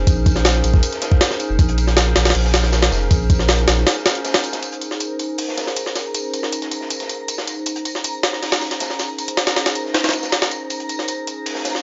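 Frenetic and raw, this drum and bass and jungle excerpt runs at 158 BPM in Bb minor, anchored by a Bbm11 chord held on a warbling, nostalgic lo-fi pad with chorus and reverb. Up front, a compressed, pitched-up sampler-style jungle kit hits with a thumpy kick and high-tuned snare over a crunchy, saturated acoustic breakbeat kit set back in a dark studio room, while a deep, round dub sub bass plays only until 3.8 seconds, just before a short break. From 5.1 seconds a twinkling granular texture adds an octave-up shimmer, and the whole recording has a dry, gritty hardware character with dulled highs.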